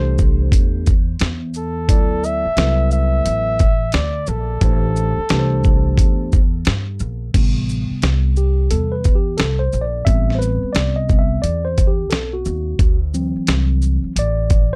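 Jazz-hop at 88 BPM in A dorian, with a swung 16th-note feel and a cool, nocturnal mood, this clip from a longer piece opens with a breathy flugelhorn melody, full of vibrato, scooped notes and tape echo, over mellow tine electric piano chords on Am7 and D9. The flugelhorn drops out at 6.3 seconds, and the clean, direct electric piano takes a solo from 7.3 seconds over Am9. Underneath, a woody pizzicato upright bass and a compressed, sampler-style drum kit with a thumpy kick, medium-tuned snare, hi-hat, shaker and crash sit up front in a dry, gritty hardware recording.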